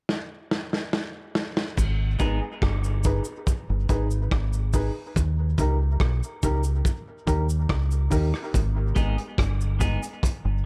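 Meditative and hypnotic, this dub reggae excerpt opens with a gritty, saturated breakbeat drum fill before a round, punchy fingered electric bass and a faint cabasa enter at 1.8 seconds, with a woody, mellow upright piano stabbing through dub echo over G#m and D# while a clean, twangy electric guitar, also echoed, flickers briefly and returns near the close at 8.9 seconds, all set in a small, echo-heavy room.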